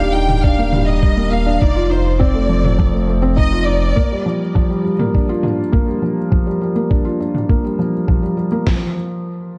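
Moving and cinematic, this excerpt of piano and strings electronica in G minor sits at 102 BPM over Ebmaj7, F7 and Gm7 chords. A soft, felt-muted upright piano plays an intimate riff up front with audible action noise and delay, while a lush violin section carries a bowed, vibrato-rich melody with delay until 4.3 seconds, and a round, deep analog bass pumps against the sidechain until 3.9 seconds. A muffled, tape-toned sampler-style kit with a thumpy kick and medium-tuned snare drives the groove alongside layered, filtered electronic toms, all under a dark production with light reverb and a filter sweep on the drums.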